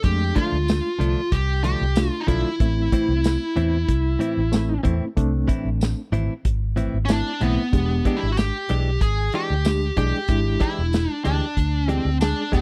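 Soulful and smoky, this straight-eighth soul blues excerpt moves at 94 BPM in A harmonic minor, with a faint sixteenth-note swing over a Dm to Am change that lands on E7#9 at 7.7 seconds. A small-room acoustic kit with a tight kick, a medium-tuned snare, hi-hat and tambourine sits up front with a rolled-off top, beside a dark, round, foam-muted fingered bass, while a smooth overdriven picked lead guitar carries the melody. Underneath, a reedy, lightly overdriven electric piano with fast tremolo enters at 0.1 seconds, and a bright, twangy, compressed clean guitar adds picked stabs from 0.4 seconds, all in a dry, close 1970s-style studio sound.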